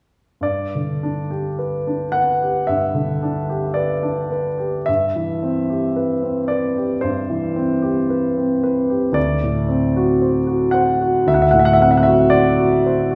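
Serene and tender, this romantic classical nocturne for solo grand piano unfolds at 56 BPM in 4/4 with a supple rubato feel, moving through G, Cmaj7/G and D7 in G major. The piano sounds warm, polished and present, sitting up front as it ranges from D2 to F#5, while a wet recital hall reverb gives the sense of listening from further back in the room. The passage begins at 0.4 seconds and is cut from a longer piece, ending at 13.2 seconds.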